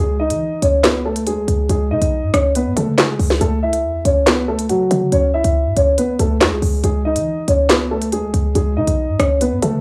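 Dark and tense, this half-time drill cut at 140 BPM is led by a mellow, boxy concert grand piano, its action noise audible through a low-pass filter and analog delay as it moves over chords from G#5/C# to C#m and G#m/C#. A punchy, tight 808-style bass with a sine body, a noise layer, a fast attack and decaying notes sits up front alongside the piano from the start. From 0.3 seconds an electronic drill kit adds a sharp snare, crisp hi-hats, handclaps and rim clicks, all captured in a dry, gritty hardware recording with a small-room ambience.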